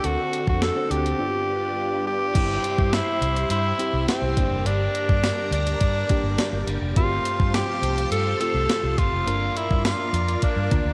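1980s-style pop at 104 BPM in a straight 4/4, this short cut from a longer piece feels urgent and moody, bathed in a lush hall reverb and the soft haze of a home cassette recording. A raspy, gritty tenor saxophone carries the melody up front, forceful and punchy with a light vibrato and a smooth top. Beneath it, a mellow FM electric piano with chorus adds round, warbling accompaniment, while a phased string machine holds swirling, evolving sustained chords treated with ensemble chorus and phaser. A foam-muted fingered electric bass supplies a dark, round low end, and a clean 12-bit drum machine with a thumpy kick, medium-tuned snare, hi-hat, tambourine and crash sits up front with a sampler-style character. At 2.3 seconds a very quiet, overdriven stack guitar joins the accompaniment as the harmony moves from D7 and G7 through C/G, Gm, Fadd9/G and Bb/G.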